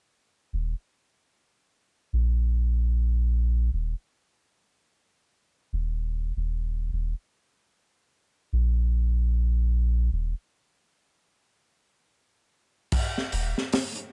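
A swung sixteenth-note feel in 4/4 carries this dark, brooding trip hop excerpt, where a deep, round dub sub bass with a soft, square-edged tone and tube saturation holds the foreground from 0.5 seconds, sitting up front in a dry, close sound. After a stop at 11.3 seconds, a crunchy breakbeat kit enters at 12.9 seconds with a punchy kick, high-tuned snare, hi-hat, and dark crash cymbal, its gritty, saturated small-room sound rolled off at the top.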